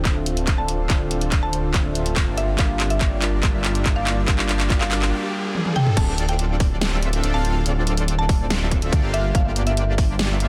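Opening on a mellow tine electric piano, a shimmering granular pad and a soft supersaw riff over a thick, detuned saw bass in D minor, this lush, bittersweet half-time future bass cut at 142 BPM builds through filter sweeps, drum fills and a very quiet riser while a woody, mallet-like pluck carries the melody. An overdriven, hard-clipped kick and a huge-snared dubstep kit play from the start and push on through the drop at 6.0 seconds, with the sidechained synths and bass pumping under a dense, heavily limited master.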